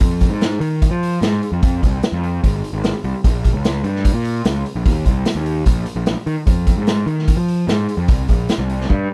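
A fuzzy, overdriven picked electric bass sits up front and drives this cool, moody indie rock fragment in F minor at 149 BPM alongside an acoustic vintage drum kit of hi-hat, punchy kick and medium-tuned snare with a small, pumping room sound and a rolled-off top, all kept fairly dry and ending in a drum fill at 8.9 seconds.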